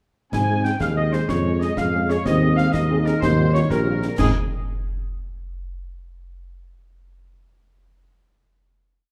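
A dark, warm production places this brief wind band piece in a moderately reverberant recital hall. It is a proud, spirited military-style march in Ab major, moving in 6/8 at 125 BPM with a straight feel, and it lasts only a few seconds before settling on a final Ab chord at 4.2 seconds. A roomy, distant trumpet section with a soft attack carries the tune, doubled in unison by a clear, close-miked woodwind section with light vibrato. Beneath them a euphonium plays a counter-melody in the background, and a mellow French horn section supplies after-beat and sustained chords with a smooth top. The tuba sits up front, giving bass on the beats and sustained bass notes. Concert snare, clash cymbals and concert bass drum add a marching snare over a bass drum on the beat, with dark cymbals in a small-room sound.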